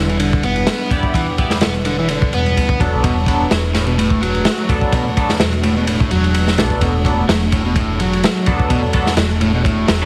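Heavily compressed into a radio-like squeeze with vinyl crackle and a moderate studio reverb, this raw, swaggering breakbeat cut from a longer piece rides a 127 BPM groove with a light swing over Em7 moving to Bm7/E. Up front, a gritty, saturated breakbeat kit with a tight kick, medium-tuned snare and dark ride cymbal plays with a woody pizzicato upright bass and a double-tracked, overdriven electric guitar riff dressed in spring reverb and delay. From 0.9 s a nasal, band-passed sawtooth chord stab with phaser and delay joins, while a deep, moody pad of detuned, wave-folded sustained chords carrying chorus, vintage sampler grit and sidechain pumping sits in the background.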